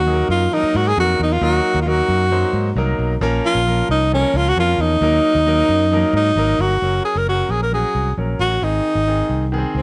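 Uptempo 1960s-style soul in Eb dorian at 134 BPM, this short cut from a longer piece feels urgent and driving in a straight 4/4. A breathy tenor saxophone carries the melody up front, close-miked and whispered, with soft attacks, scooped notes and a light vibrato in a jazz style, bathed in plate reverb. Beneath it, a fingered electric bass sounds dark, round and punchy, sitting amped and forward from the first moment. A clear baby grand piano joins at 0.1 seconds as accompaniment, intimate and natural with long sustain, audible action noise and its own plate reverb. The harmony moves from Ebm to Bbm and back in the opening section, then shifts to Gb and Ab when a new section arrives at 6.8 seconds, all within a moderate studio ambience.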